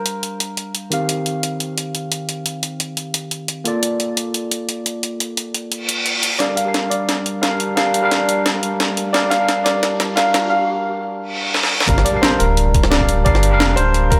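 A barky, overdriven tine electric piano under a filter sweep opens this dreamy, rolling liquid drum and bass in G minor at 175 BPM, with a brilliant baby grand piano touching a brief melody as gritty, pitched-up breakbeat hats and a high-tuned snare come in up front, then background reverse cymbals and risers build toward a thumpy electronic kick and deep sine sub bass that join the returning piano at 6.4 seconds, with an electronic impact marking the drop at 11.9 seconds in a lush hall reverb.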